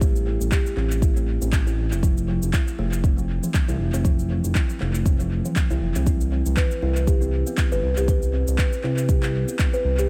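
A woody, hollow-box kalimba plays arpeggios in this earthy, driving afro house excerpt, ringing out between E3 and B4 with a soft, close, dry fingertip pluck that is shaped by sidechain pumping and a trail of tape echo. Beneath it, a smooth sawtooth-and-square synth bass holds the low end from F1 to C2, sitting up front with a fast attack, sustained notes, a touch of vibrato and its own sidechain pumping. A deep, layered electronic kick drives the 119 BPM groove in 4/4 with a 16th-note swing, set in small room ambience until it drops out at 9.7 seconds. A quieter layer of electronic shaker and handclaps fills in the rhythm, carrying the same small room ambience and tape echo. The whole passage plays as a drop over an echo-heavy digital ambience, moving from a chordless opening to Fmaj7(no3) at 2.0 seconds and settling on C5 at 6.1 seconds.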